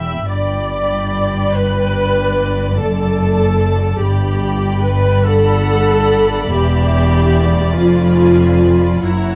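A dark, lightly reverberant studio sound frames this yearning, solemn fragment of a slow romantic movement for string orchestra, in 6/8 at 48 BPM with rubato: distant first violins carry a warm, soft-edged vibrato melody above a focused second violin line, while close, up-front violas spin a smooth, even accompaniment over rich cellos and double basses as the harmony moves from G through Gmaj7 and Em7 to Fdim7.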